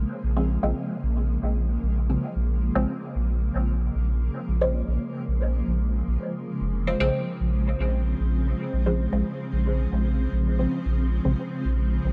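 This excerpt of deep, meditative dub techno opens with a soft, round sub bass and a cloudy granular pad sounding together from the very start, settling into a steady, straight 4/4 pulse. The pad holds sustained chords with a slow attack and long release, its blurred, evolving texture carried by its own built-in reverb. At 0.4 seconds a filtered dub chord stab enters, its muted, nasal, detuned sawtooth tone shaped by a resonant filter pluck and a moving notch, with phaser and dub echo trailing each short hit. The whole passage rests on a single Bbm7 chord, giving it a hypnotic, unchanging harmonic floor. The recording itself is dry and gritty, with all three parts placed up front and the sub bass sitting louder than the pad and stabs.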